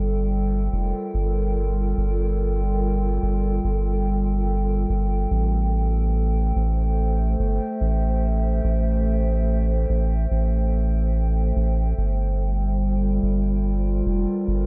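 Ambient dub at a hazy, spacious 72 BPM in G dorian with a gentle 16th-note swing, in which a warbling, detuned tape-like pad with chorus and its own reverb holds slow-blooming Gm7 and Am7 chords over a deep, round, soft sub bass, both up front in a dark, close production throughout this short cut from a longer piece.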